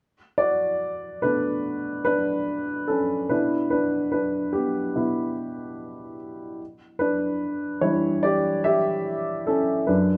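Heartbroken and emotional, this short pop passage is cut from a longer piece and rests entirely on a baby grand piano. The piano enters at 0.4 seconds and plays alone to the close at 10.2 seconds, ranging from F#2 up to E5 in an accompanying role. Its tone is natural and up front, with a mellow warmth that keeps the sadness intimate. The harmony moves from Bm7 to G6/B at 3.3 seconds and then to Em7 at 6.6 seconds, in a straight, unhurried 4/4. A moderate stone-room reverb lends a sense of real space, as though the player sits in a resonant chamber.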